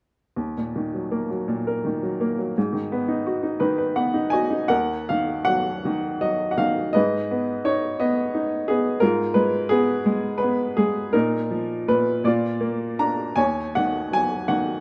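A lone upright piano opens this short classical passage, cut from a longer piece, with a wistful, reflective solo in 6/8 played with free, breathing rubato. The instrument sounds woody and a little boxy, with a short sustain, and it sits up front through close, detailed microphones and a light reverb. Its range reaches from deep bass notes up into the high treble. A brief piano fill around 3.6 seconds carries the opening phrase into a longer second section that begins at 4.7 seconds. The harmony moves through Ebm, Abm, and a diminished chord, then passes through Bbsus4 and Bb before settling on Ebm7.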